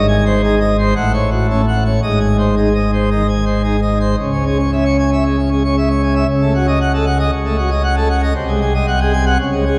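The rhythm moves in a straight 4/4 at 114 BPM, driving this stormy, majestic classical organ toccata, a fragment cut from a longer piece and tuned slightly low at A4 = 437 Hz. A single pipe organ plays alone on the full plenum, its mixtures giving a brilliant edge to a romantic voicing that spans G#1 to G#5 and sits up front in the sound. The opening pivots between G# and F#m/A before the harmony darkens at 4.2 s into C#m, then D#m7b5/C#. It closes on G#7/B# as the fragment ends at 9.8 s. A church acoustic with a three-second reverb tail surrounds the instrument, and the dark production lends the grand sound a sombre weight.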